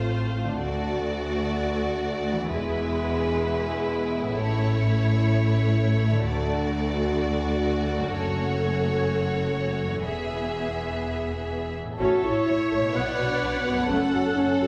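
Adventurous and heroic, this cinematic film-score excerpt in A major moves at 127 BPM in a straight 4/4, with a lush bowed violin section carrying the melody over a second smooth violin line, dark background violas, close-miked French horns holding sustained chords, ringing fingerpicked harp arpeggios, and distant cellos and portamento double basses on the bass, all building up until 12.0 seconds, when a bright solo oboe and a mellow, very quiet clarinet join with second lines, the whole heard from further back in a reverberant scoring stage.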